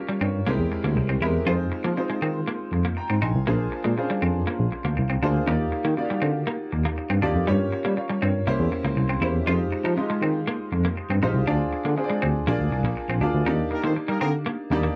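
Pop at 120 BPM with an urban, bittersweet mood, this dry, close 1970s-style studio excerpt sets a barky, lightly overdriven tine electric piano up front carrying the bass with fast tremolo through a combo amp, beside a clear, boxy baby grand piano comping with lush chorus and a bright, clean, picked semi-hollow electric guitar riff under ensemble chorus, over jazzy chords like C7b13, Fm9 and Ebmaj9, until a punchy, distant horn section in tight octave doubling adds a second line at 13.7 seconds.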